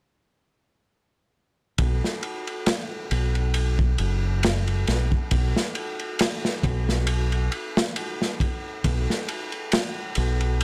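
Trip hop with a smoky, dark mood, moving at a slow 68 BPM in 4/4 with a light sixteenth-note swing, cut from a longer piece. A deep dub fingered electric bass and a crunchy breakbeat drum kit both enter at 1.8 seconds and play together until 10.6 seconds. The bass sits low and round, direct and amped, with tube saturation adding grit to its dark tone, and it stays up front in the mix. The acoustic kit sounds like it was captured in a small room, with a tight kick, a medium-tuned snare and dark ride cymbals, its saturated character and rolled-off top giving it a smooth, gritty weight. The whole recording is dry and gritty, with little reverb and a rough hardware character.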